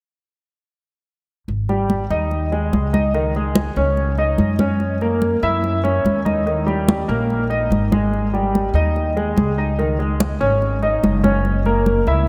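A clear concert grand piano accompanies this short Afro-Cuban jazz excerpt, its polished, intimate tone carrying audible action noise, deep bass and long sustain, with an analog chorus adding shimmer. Upright bass and congas enter together at 1.5 seconds, and the piano joins at 1.7 seconds. The music moves at 144 BPM in a straight 4/4, cycling through Ab5, Dbsus2, Gb7 and Eb. The pizzicato bass sits up front with a woody, growly steel-string character, while the congas sound bright and close, played with soft hands on thin, medium-tuned skins. A cathedral-sized reverb soaks the mix in a dreamy wash, giving this danceable, sophisticated groove a floating quality until it ends at 12.3 seconds.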